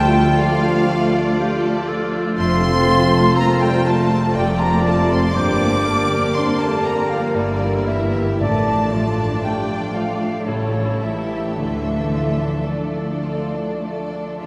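Deep cathedral reverb surrounds this brief passage from a slow, romantic orchestral movement in D minor, set in 3/4 at roughly 50 to 61 BPM with a rubato, yearning and melancholic feel. The melody is carried by an intimate chamber violin section played sul tasto with light vibrato and a soft attack, while a clear solo clarinet, a pure, hollow silver flute and a lush symphonic violin section with a focused, smooth top shape the second lines. Beneath them, an expressive viola section with portamento plays the accompaniment, a dark, distant French horn section and a mellow, very quiet trombone section hold sustained chords, and a ringing, fingerpicked concert harp spreads arpeggios through the background. A rich, even cello section and a warm, close double bass section bowed with portamento anchor the bass until they stop at 12.5 seconds. Very quiet timpani struck with hard mallets on calf heads add an articulate accent between 8.4 and 9.9 seconds. 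The harmony moves from D minor through F and G minor to an A7 chord, resolving back to D minor at 11.6 seconds.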